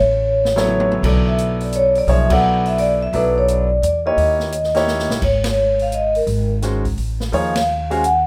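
A swung triple-meter pulse drives this short modal jazz passage, cut from a longer piece, with a searching, intense mood. The upright bass sits up front from the opening, pizzicato and woody with steel strings, while the vibraphone carries the melody with soft mallets, its metallic, ringing tone mellow and airy, with a slow motor vibrato. An open acoustic drum kit joins just after the start, with dark cymbals, a medium-tuned snare, a boomy kick and toms in a small, natural room, and a drum fill leads into the second section at 5.2 seconds. A clear concert grand piano supplies accompaniment, intimate and polished with deep bass, long sustain and audible action noise. The band hits shared accents along the way as the harmony moves through minor eleventh chords to a dominant chord with a flat ninth, then settles on a suspended chord, the ensemble set in a moderate studio reverb.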